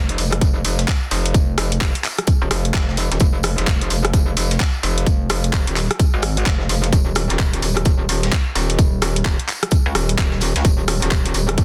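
A metallic, wobbling FM bass opens this aggressive, swaggering bass house fragment, sitting up front from the first instant with a fast attack, a saturated and compressed edge, bright chorus shimmer and sidechain pumping. A layered, produced garage kit joins at 0.1 seconds with handclaps, rim clicks and bright hi-hats, its snare softly clipped. An electronic kick arrives at 0.4 seconds, tight and up front, anchoring the swung sixteenth-note groove in four. Deep in the background, a jazz brush kit adds a dark, smooth layer of hi-hat, medium-tuned snare and tambourine, its small-room sound rolled off at the top, its hats and percussion pumping with the sidechain and high-pass filtered. The whole clip, cut from a longer track, carries a dense, heavily limited modern master with a touch of small-room ambience.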